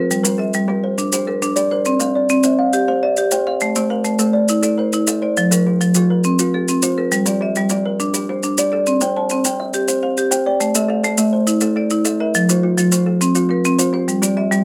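Hypnotic and warm, this southern African traditional piece turns an mbira-style interlocking cycle in a straight 12/8 at 138 BPM, counted in dotted quarters, built on a G equiheptatonic scale. Kalimba and marimba both sound from the start and spin arpeggios through the whole cut, with the kalimba's ringing, hollow-box pluck carrying a vintage, band-limited tone against the marimba's bright, percussive rosewood bars struck with medium hard mallets. Maracas join at 0.1 seconds, adding a grainy, mellow shake that sits close and dry. The harmony circles through Gm, C, Am and F twice, with the second pass beginning at 7.1 seconds, before landing on a bare G5 at 14.1 seconds. Recorded with close, detailed microphones and little reverb, the marimba and kalimba sit up front in this excerpt cut from a longer piece.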